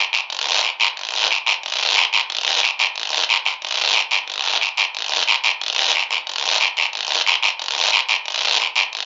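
This is a dry, close-sounding outdoor recording with a dull top end, a short cut from a longer Latin piece. A lone guiro carries it from 0.1 seconds to the end at 9.1 seconds, sitting up front in the mix. Its tone is raspy and acoustic, squeezed by compression and roughened with saturation for a gritty bite. The tempo is a brisk 181 BPM in a straight 4/4. The mood is driving and danceable, with the scraped percussion alone pushing the groove forward.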